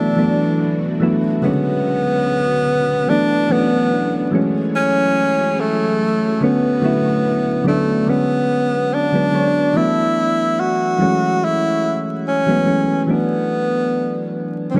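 A breathy tenor saxophone carries the melody up front in this reflective, melancholic lo-fi hip hop piece, its jazz-style solo line touched with light vibrato and trailing dub echo. Alongside it, soft electric-piano-like synth keys supply a round, gentle accompaniment with a fast attack and a decaying tail, shimmering through chorus and their own dub echo. In the background, a string machine voicing cellos adds full, vintage sawtooth pads with a sub octave and a slow attack, thickened by ensemble chorus, until it drops away at 8.1 s. The track moves at an unhurried 72 BPM in 4/4 with a gentle swing on the sixteenths, set in B dorian and tuned to A4 = 439 Hz, drifting through chords such as E9sus4, Bm69 and F#m9. Light reverb, small room ambience and vinyl crackle give the echo-heavy mix a dusty, intimate feel, and the passage is cut from a longer piece.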